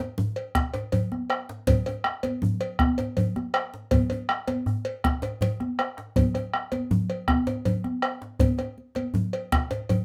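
The round, vintage-toned bombo stands out most in this brief cut from a longer West African traditional drum ensemble piece, sounding band-limited and up front from 0.5 seconds until 9.7 seconds. The mood is powerful and earthy, moving at 107 BPM in a 12/8 metre counted in dotted quarters with a straight feel. A deep djembe opens the recording at 0.0 seconds, struck with hard hands and carrying metal rattles. High-tuned congas with a thick-skinned, warm tone join almost immediately, also played with hard hands, and a metallic cowbell follows moments later. The djembe, congas and cowbell are close and dry, and the whole group sits in a small room with a wet reverb.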